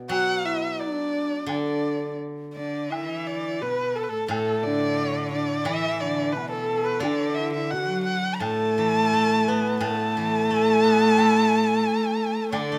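A warm, bowed erhu sits up front carrying the melody with vibrato and portamento, joined by an airy, bamboo xiao as a second line, a silvery, ringing steel-string zither played with fingerpicks, and a close, dry woodblock in the background, in this festive, graceful Chinese chamber piece in D gong mode at 87 BPM in a rubato 2/4. A biting, nasal cello enters at 2.6 seconds as another second line, its intense bowed tone joining the ensemble. Close, detailed microphones capture the players in a moderate recital hall reverb, in an excerpt cut from a longer piece.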